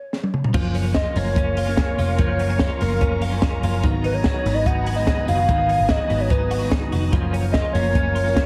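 A hollow, woody clarinet-like synth lead carries the melody with chorus and delay throughout this breezy, youthful jangly indie pop excerpt at 146 BPM, opening over a brief stop-time drum fill from a compact cocktail kit with a punchy kick and high-tuned snare before the band enters at 0.5 seconds. A foam-muted, round picked bass and a scooped, clean electric guitar sit beneath bright, twangy twelve-string arpeggios with tremolo, while a silky, warbling string machine with ensemble chorus adds sustained chords from 0.9 seconds, moving between Gbmaj7 and Abm7. The mix has a moderate club reverb and a heavily compressed radio sound.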